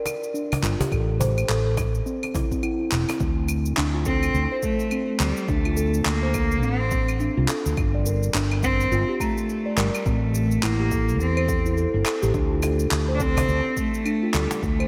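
A growly, bright fretless electric bass sits up front with tube saturation and a touch of chorus, pumping against an electronic kick drum beneath a round, ringing steel tongue drum whose meditative arpeggios drift through ambient delay in this mystical organic downtempo excerpt in D minor at 105 BPM with a swung 16th feel. Layered electronic claves, cabasa and handclaps run throughout, while a snappy, hard-hands cajon appears only at the opening and again from 12.6 seconds. At 4.1 seconds a rich, bowed cello enters with vibrato and a smooth top, its focused line also washed in delay within a dreamy, reverb-soaked hall.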